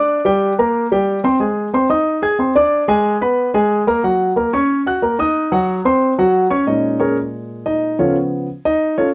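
Jazz in a sultry yet driving mood, this short cut from a longer piece features a solo grand piano with a warm, up-front tone. The piano carries the whole performance on its own, ranging from Bb2 up to Ab6 in a straight 4/4 feel. The harmony moves restlessly through colors such as Gm, Ab, an Abdim, Gb6 and Cdim/Gb before settling into Bbm7 and a tense Dbaug7. At 6.7 seconds a new section opens, where the piano takes a solo turn that runs to the end at 9.1 seconds. The sound is dry and intimate, captured by close, detailed microphones with little reverb.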